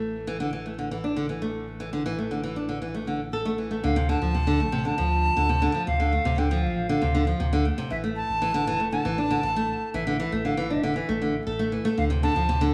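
A fingerpicked flamenco guitar sits up front in this intimate, wistful folktronica fragment, its acoustic arpeggios carrying faint finger squeaks and a trail of tape echo. Beneath it, a deep, round sub bass with a sine-like tone and fast attack holds sustained notes from the very start, giving the piece a soft, cushioned low end. At 3.8 seconds, a wooden flute enters with an airy, bright, straight tone and crisp attack, playing an expressive melody that also carries tape echo. The harmony moves between Asus4 and Dm7 in a steady, straight 4/4 feel, lending the music a gently unresolved, searching quality. A light studio reverb, small room ambience and a bed of vinyl crackle wrap the parts in a close, slightly worn atmosphere, as if this moment were lifted from a longer piece.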